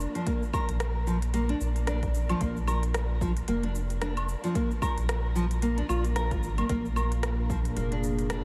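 Peaceful and warm, this short organic downtempo excerpt at 112 BPM with a lightly swung 16th feel rests on a single Bb7 chord in Bb mixolydian, where an up-front fingerpicked nylon-string guitar arpeggiates through subtle chorus and diffuse ambient delay over a round, deep sub bass with sidechain pumping, a crisp, tape-toned electronic kit of cabasa, hi-hat, rim click and woodblock, and a punchy overdriven electronic kick from 0.3 to 7.6 seconds, before a dark, warbling, nostalgic lo-fi pad with chorus and sidechain pumping slowly rises in at 7.0 seconds, all set in a dreamy, reverb-soaked mix with a huge ambient tail.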